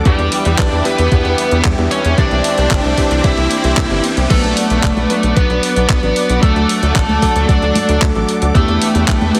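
A lush, detuned unison pad with chorus and phaser holds brilliant, airy chords over clangy electric grand piano stabs and a tight, punchy sawtooth sequencer bass as this italo disco excerpt opens in B minor at a straight 113 BPM in 4/4. A distorted, high-gain lead guitar takes the melody up front, its picked tone shaped by a low-pass filter and digital delay, while a thumpy electronic kick and a clean 12-bit drum machine of congas, handclaps, hi-hat and crash cymbal carry a tape-tinged, small-room character. In the background, an electronic riser builds from 0.9 to 4.3 seconds as the harmony moves from Em7 to Cadd9. From 4.3 seconds the chords shift through Bm and D before returning to Em7, giving the passage a nostalgic, bittersweet pull. The whole mix sits in light reverb with a heavily compressed, radio-like sound, and the clip is cut from a longer piece.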